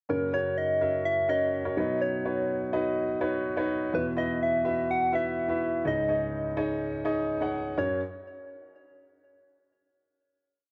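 A straight 4/4 pulse at 125 BPM carries this short, uplifting, hopeful piano-driven pop piece in F# mixolydian, tuned to A4 = 444 Hz: an up-front warm grand piano plays syncopated, closely voiced chords with long sustain through F#, Badd9, Esus2 and C#sus2, while a round, gentle FM synth lead with a warbling vintage chorus and delay sings hook-like motifs above, and both parts stop at 8.0 seconds after the final F# chord lands at 7.8 seconds, leaving a small room's light reverb.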